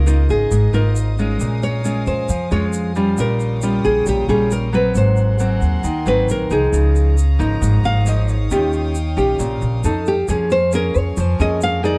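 A fingerpicked nylon-string guitar carries the melody up front in this smooth, intimate bossa nova excerpt at 135 BPM in Bb minor, its warm classical tone showing the occasional finger squeak, while a second, darker nylon-string guitar fingerpicks the accompaniment through chords such as Db69, Bbm7 and Eb9/Bb. A woody, thumpy pizzicato upright bass sits close beside them, and a grainy, bright egg shaker enters at 0.1 seconds, close and dry. Quietly underneath, a bowed chamber string section holds reedy, gut-string chords in period style, all within a light reverb.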